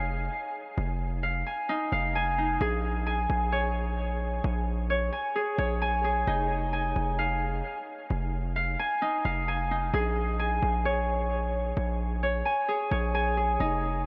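A Celtic harp and a hard-hitting 808-style bass sound together from the first moment of this brooding, menacing trap excerpt, set in Bb minor at 131 BPM with a half-time feel in 4/4. The harp carries the arpeggios, its fingerpicked, ringing acoustic tone sitting up front while a low-pass filter softens its edges and a diffuse ambient delay trails behind each note. Beneath it, the 808 bass is punchy and heavy, a sine tone with a noise layer, fast attack and decaying tail, also placed up front in the mix. The harmony moves between Fm7 and Bbm7, shifting at 2.6 seconds and again at 6.3 and 9.9 seconds. A huge ambient reverb with a 7.1-second decay soaks the dreamy mix, giving the whole clip a cavernous, hazy atmosphere as both parts play through to 14.1 seconds.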